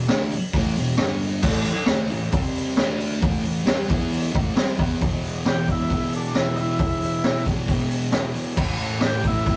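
A straight, rowdy garage rock groove in four drives this short cut, with a raw drum kit of boomy kick, high-tuned snare, hi-hat and crash sitting up front, gritty and saturated, under a thick, double-tracked fuzz guitar riff that opens the piece. A very quiet, grainy egg shaker enters at 1.4 s, close and dry. At 5.5 s a buzzy, overdriven vintage combo organ takes a solo melody with light vibrato, all captured in a rough rehearsal-room recording with a small room's moderate reverb.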